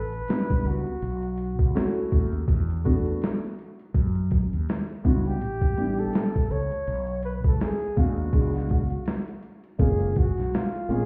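Jazz-hop at 82 BPM with a cool, relaxed 16th-note swing, built on a gritty, pitched-down boom bap kit with a thumpy kick, a round fretless electric bass and a woody upright piano through mostly suspended chords, under a breathy flugelhorn melody with vibrato and slapback echo, all heard muffled as if through a wall in a stone room before the harmony settles on F#maj9 at 9.8 seconds in this cut from a longer piece.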